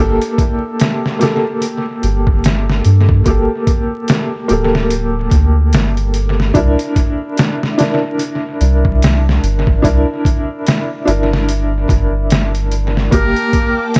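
A swung 16th-note groove at 73 BPM in 4/4 drives this melancholic, brooding trip hop fragment in G dorian, where a gritty, pitched-down sampler-style drum kit with a thumpy kick and analog delay sits up front beside a deep, round dub sub bass with tube saturation and a felt-muted upright piano, mellow and intimate under tremolo and tape echo, moving from Gmadd9 to C9 and back, until a buzzy, metal-muted trumpet with scooped notes and a lush bowed violin section arrive at 13.1 seconds, set in an echo-heavy small-room ambience flecked with vinyl crackle.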